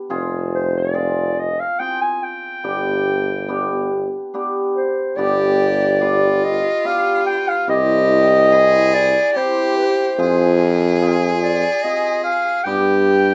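Soulful and bittersweet, this klezmer piece moves at 72 BPM in a straight 3/4, set in G phrygian dominant and cut from a longer work. A hammered, shimmering cimbalom rings out the accompaniment, while a clear, punchy tuba with vibrato holds the bass up front in a pop style. From 0.5 seconds a mellow solo clarinet carries the melody in a classical style, sounding distant and roomy yet sitting forward in the mix. At 5.2 seconds, as the second section begins, a single bowed violin joins with a rich, focused second line, close and full of vibrato. Chords pass from Fm to G, then C, Fm and G again, all within a small room's moderate reverb and a rough home demo mix.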